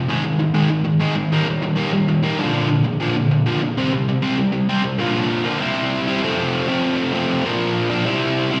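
A straight 4/4 pulse at 196 BPM runs in half time for the first 5.0 seconds, through the opening section, before the second section arrives, driving this energetic, rebellious punk fragment cut from a longer piece. A lone overdriven electric guitar carries everything, its dark, picked, double-tracked tone sitting up front with slapback echo and delay as it moves through chords from Ab5, Eb and Bb to C5, then Bb, C, F, Bb and C. The sound is that of a live gig heard through the venue's PA, with recital hall reverb around it.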